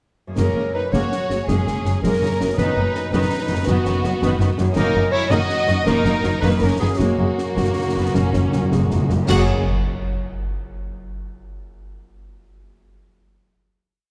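Triumphant and heroic, this complete cinematic adventure cue strides along in a straight 12/8 at 108 BPM in F# major, its harmony moving from F#add9 through B/F# and D#m/F# before returning home. A lush violin section carries the melody with vibrato and a focused, smooth top, doubling the tune in sixths and at the octave, while a second violin section sits in the background doubling it in unison, and a clear, close-miked clarinet adds its own classical line. Beneath them, violas drive a rhythmic ostinato with sustained chords and phrase-end answers, a dark, woody cello section holds a very quiet bass ostinato on F#, and a rich double bass section doubles the bass line, all while a ringing concert harp rolls arpeggiated chords in the background. Dark-cymbaled, close and dry drums give the piece a marching snare over bass drum strokes on the beat. At 7.0 seconds, hard-mallet timpani with calf heads roll in alongside cymbal swells, crashes and bass drum strokes, building a fill that leads to a full-band accent at 9.3 seconds. 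The ensemble then rests on a final chord that blooms in a moderate concert hall reverb.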